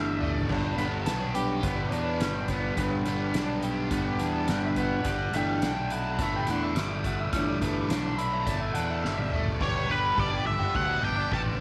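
Hypnotic and hazy, this psychedelic rock fragment in G lydian moves at a straight 105 BPM, with a reedy, clean vintage combo organ taking a solo of sustained chords over G and Dsus2/G until 9.6 s, beside a bright, double-tracked overdriven guitar riff treated with flanger and a fuzzy, overdriven fingered bass. A soft-mallet drum kit with a fat snare and boomy kick plays fills at the start and just before the shift to Gadd9. At 9.6 s a dark, up-front octave-fuzz lead guitar enters with a short melody colored by wah, distortion and tape echo, all set in a wet spring reverb with small room ambience.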